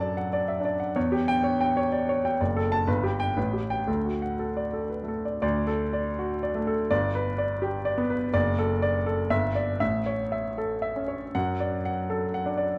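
A clear, up-front grand piano opens alone on a D/F# chord, playing a heroic, brilliant virtuoso study in D major at 114-127 BPM in a rubato 3/4, ranging from F#1 to A5. The close, intimate sound catches audible action noise and a short, natural sustain, set in a moderate scoring-stage reverb with vinyl crackle underneath. The opening phrase returns at 5.4 s, moving again through G, D and A harmonies before settling back on D/F# at 11.3 s, and the excerpt, cut from a longer piece, runs on to 12.8 s.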